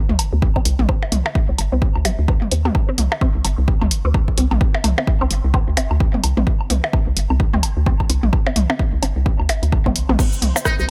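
A swung 129 BPM groove in 4/4 drives this hypnotic, quirky minimal techno excerpt in C minor, built on an up-front punchy kick, a small-room analog drum machine with crash, hi-hat and rim click, and tape-echoed electronic toms, woodblock and percussion blips. A hollow, bouncy FM bass with tube saturation pumps against the kick, while a juicy, squelchy resonant pluck riff moves under phaser and chorus, and a filter sweep on a synth arpeggio sound runs throughout. Near the end a compressed cabasa enters at 10.2 seconds, a flickering granular texture drifts in the background from 10.4 seconds, and a buzzy trumpet with a metal mute sounds briefly at 10.7 seconds, all in a dry mix.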